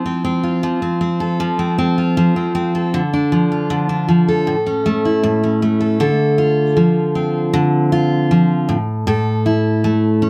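A full-bodied, jumbo-sized picked steel-string acoustic guitar sits up front from the very start, playing alone throughout this reflective, tender pop passage in D minor at 78 BPM in a straight 4/4, tuned a touch low to A4 = 436 Hz. It moves from F through Dm and A, then opens into a second section at 6.0 seconds on Dm7 before settling on A5. A modest small-room reverb lends the intimate guitar a gentle sense of space in this short cut from a longer piece.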